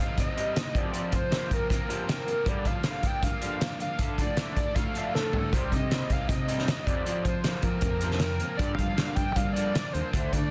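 A driving straight 4/4 pulse from a loose indie drum kit, with its punchy kick and fat snare up front in a pumping room, carries this restless, cool indie rock fragment cut from a longer piece. A dark, compressed overdriven electric guitar and a bright raw garage guitar set back in the mix play picked riffs under a hollow, woody square-wave lead melody with chorus, vibrato and a ring-modulated edge. After a drum fill at 5.1 seconds, a growling fingered electric bass with overdrive enters at 5.5 seconds, thickening the dense, heavily limited, dry mix.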